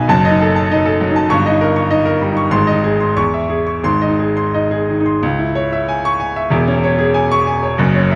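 Agitated and stormy, this brief cut from a longer classical virtuoso piano study in 2/4 has a solo baby grand piano playing with rubato from 0.0 to 8.2 seconds, its bright, brilliant tone carrying long sustain up front across a span from E1 to C#6, and the moderate reverb of a recital hall and a dark production surrounding it as the harmony moves through diminished and dominant-seventh chords before settling on C# minor at 5.2 seconds.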